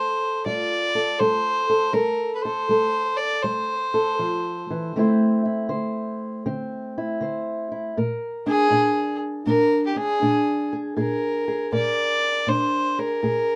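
A dark, bowed fiddle with a reedy gut-string tone and smooth top carries a mournful, brooding melody over a fingerpicked, woody, boxy old ladder-braced acoustic guitar on aged strings, both up front in light reverb, in this short excerpt of acoustic country blues at 80 BPM with a swung 4/4 lilt, moving from Gsus2 to Dsus2 at 5.0 seconds and settling on Bb7 at 8.0 seconds.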